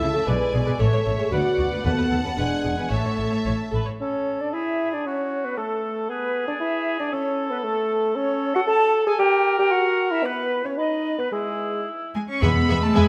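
Spirited and lively, this quick classical-period orchestral passage in 2/4 moves with a flexible, rubato feel, opening with rich violin sections carrying the melody and a second line over violas, dark French horn chords, focused double basses and intense cellos. The cor anglais and an up-front bassoon play throughout, and a pure silver flute joins at 4.0 seconds while the strings and horns drop away. From 12.1 seconds the full string body returns, joined by timpani at 12.4 seconds for a brief close, all set in a moderate concert hall reverb.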